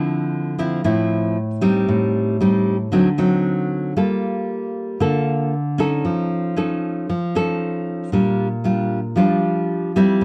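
A fingerpicked nylon-string guitar carries this intimate, wistful bossa nova fragment on its own, sitting up front with the warm tone of fresh strings and an audible finger squeak. Played in a classical manner, it moves at 115 BPM in a straight 4/4 feel in D minor, spanning from A2 to A4 and tuned a touch low to A4 = 437 Hz. The harmony is rich and jazz-tinged, passing from Dm9 through Am7b5 and D7b9 to Gm9 at 4.0 seconds, then Faug7 and finally Bb6 at 8.1 seconds. A moderate studio reverb gives the guitar a gentle sense of space, while the overall production is dark and warm. Cut from a longer piece, the passage lasts just over 10 seconds.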